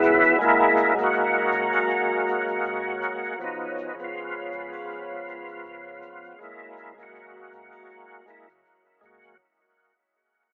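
Trip hop at 80 BPM with a lightly swung sixteenth feel, brooding and hypnotic, cut from a longer piece and fading out across its 9.4 seconds over F#7 and C#7/E# chords. A gritty, overdriven tonewheel organ sits up front with chorus vibrato, slow rotary speaker, harmonic tremolo and tape echo, backed by a moody, detuned sawtooth pad with slow attack and long release, a round, deep analog bass with a filter sweep, and a faint layer of tube shaker, triangle and group handclaps in the background. The whole mix carries a worn, warbling cassette character with vinyl crackle, pitch drift, a telephone-like tone and light small-room reverb.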